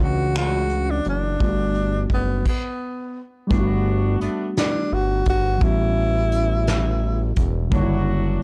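In a slow six-eight, this late-night, sultry R&B fragment places a breathy, whispered tenor saxophone melody up front over a reedy electric piano moving through Dmaj9, Gmaj9, A13 and F#7b9b13, a fat, wave-folded analog bass with a filter sweep, and a roomy brush kit of snare, tight kick, hi-hat, finger snaps and crash, with a brief stop from 2.5 to 3.5 seconds and punchy horn-section stabs arriving at 3.5 and 7.7 seconds, set in a small room with a cassette-tape sound.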